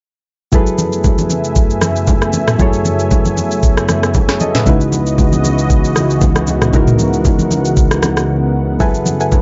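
Amapiano with a deep, late-night mood and a lightly swung sixteenth-note feel, built on soft, round electric-piano-like synth keys with chorus and a warbling, detuned analog pad that pumps with sidechain compression, both moving from F#m11 to C#m11. An electronic R&B drum kit with a knocking kick, sharp snare, rim click, shaker and toms sits up front, while low-tuned, thin-skinned congas stay in the background. After a brief break at 8.3 seconds, a gentle pluck with chorus and delay adds stabs at 8.8 seconds, all within a dark production and light reverb in this excerpt from a longer piece.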